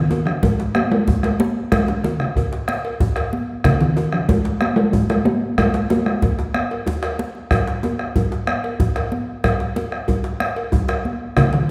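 Festive and driving, this West African traditional drum ensemble moves at 124 BPM in a straight 12/8, heard as an excerpt cut from a longer piece. The resonant talking drum carries the melody up front, ranging from Db3 to Bb3; it plays from the start until 7.0 seconds, then returns briefly at 11.4 seconds. Beneath it, a deep, dark bombo sits prominently, entering at 0.3 seconds, while a distant metallic cowbell rings out from a large room. Ringing, high-tuned congas played with soft hands sound close and dry, contrasting with a medium-tuned djembe whose metal rattles give it a vintage, band-limited character. The ensemble is bathed in a wet scoring-stage reverb with a 1.7-second decay, lending the whole performance a spacious sheen.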